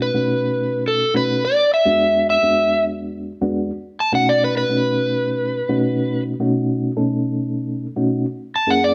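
A reedy electric piano with a fast tremolo and an overdriven slide guitar start together at the top of this rollicking, gritty blues fragment, which runs at 106 BPM in a straight 4/4 and sits in B mixolydian. The electric piano, mellow and clean and heard through its own built-in speakers, holds down the accompaniment from its low register up to the middle, shimmering under the tremolo. Up front alongside it, the fingered slide guitar carries the melody in a higher range, its warm overdrive giving the lead a rough, singing bite. The harmony moves from B7 to E7 at 1.4 seconds, back to B7, and reaches F#7 at 8.2 seconds, just before the passage cuts off. The band sounds as if it is playing live in one room, with a moderate stone-room reverb lending the pair a close, natural ambience.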